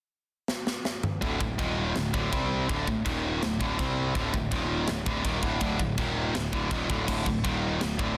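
A straight 4/4 pulse at 164 BPM drives this aggressive, dark heavy metal passage, which opens with a drum fill at 0.5 s from a polished, up-front acoustic kit with a high-tuned snare, tight kick, toms and bright china and crash cymbals. At 1.2 s two picked, distorted electric guitars enter on a riff built on D5, Eb5 and C5 power chords, one tight and forward and the other high-gain and set in the background, joined by a growly picked bass with overdriven fuzz. The mix has little reverb and a dense, heavily limited modern master.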